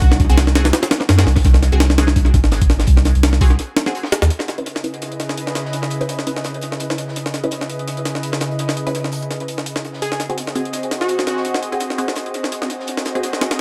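This cut from a longer drum and bass track opens straight into a drop, with a compressed, pitched-up jungle sampler-style kit up front: a thumpy kick, a medium-tuned snare and high-passed hats with gritty, tape-warm grain and tape echo. Underneath, a soft, round sub bass anchors the opening in C# minor at 168 BPM with a lightly swung 16th feel, then falls away at 4.3 seconds as the harmony moves from G#7 to C#m7. Throughout, a muted, wave-folded dub chord stab with phaser and dub echo sits in the background, and a very quiet, dark acoustic breakbeat kit with a high-tuned snare adds saturated crunch behind the main drums. From 4.8 seconds a lush, thick, detuned sawtooth pad swells in with chorus, while a punchy, catchy unison lead with vibrato, tape coloring and dub echo flashes briefly at 10.0 seconds over a G#7/B# chord. The echo-heavy mix with light reverb gives the frenetic jungle energy a nostalgic haze.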